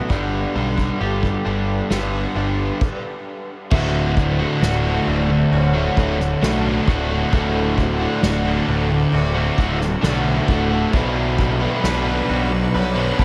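An up-front overdriven electric guitar with lush chorus plays a riff over a warm fuzz picked electric bass in this euphoric, soaring post-rock excerpt. A distant soft-mallet drum kit with dark cymbals sits behind, while a bright twangy electric guitar and an airy vibraphone with analog delay play arpeggios. A very quiet evolving wavetable pad holds sustained chords, and after a build-up and a stop at 2.8 seconds, a dark, thick fuzz guitar joins at 3.7 seconds, all in a dreamy mix soaked in reverb.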